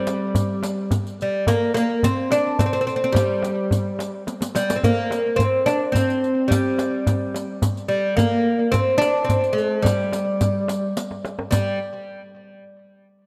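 A bright, woody fretless oud leads up front, plucked with a plectrum on doubled strings and carrying a tape echo as it traces a melody between G3 and D4 in a soulful, hypnotic Persian modal piece in dastgah shur on G, moving at 107 BPM in a straight 3/4. Beneath it, a deep tombak played with soft hands and a close, dry riq with dark jingles keep the pulse, and drum fills arrive at 4.3 and 11.0 seconds. The dreamy mix is soaked in a moderate plate reverb, and this passage is cut from a longer piece, with all three parts stopping at 11.8 seconds.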